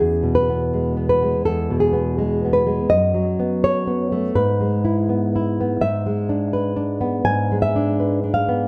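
The rhythm breathes freely in a rubato 4/4, stretching and pulling at the pulse. This brief romantic passage for solo classical guitar, cut from a longer piece, feels passionate and melancholic. A single nylon-string guitar carries everything from 0.0 to 8.7 seconds, ranging from its lowest bass notes up into its upper register, and its thumb-plucked tone is dark and full-bodied with a deep classical character. The harmony moves through a short progression that settles on a seventh chord near its close, giving the phrase a yearning, unresolved feel. The guitar sits up front in a moderate scoring-stage reverb whose 1.9-second tail lends the sound a spacious, resonant bloom.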